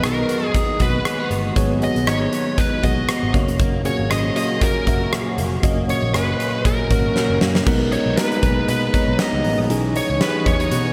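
Nostalgic and romantic, this 1980s-style pop excerpt moves at 118 BPM in 4/4 with a light sixteenth-note swing, with bright digital production and a lush hall reverb. A smooth, overdriven lead guitar carries the melody over a mellow tine electric piano heard through its built-in speakers, while a shimmering, slow-attack pulse-width pad sustains retro, detuned chords in the background. Beneath them, a compressed electric guitar at the edge of break-up plays a fingered riff through analog chorus, and a dark, foam-muted picked bass holds down the low end with a round, amped tone. The huge arena drum kit sits up front with a fat, gated-reverb snare, punchy kick, rim clicks, hi-hat and bright crash cymbals in a pumping room sound. The harmony moves from G#m7 to F#, and a drum fill at 7.2 seconds leads into a new section at 7.7 seconds built on G#madd9/B and C#madd9/B.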